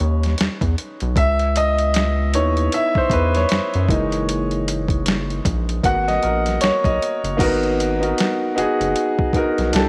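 R&B and neo-soul in a sultry, smooth mood, this clip from a longer piece swings gently as a dark, boxy grand piano with audible action noise takes a solo over the opening 7.4 seconds, moving through chords such as B69, C#m7, F#13 and G#m9. A rubbery, hollow square-wave bass with a resonant filter pluck bounces underneath, while a compressed, sampler-style boom bap kit adds overdriven grit through a thumpy kick, medium-tuned snare, hi-hat and crash. All three parts sit up front in light reverb, and the music moves into a new section at 7.4 seconds.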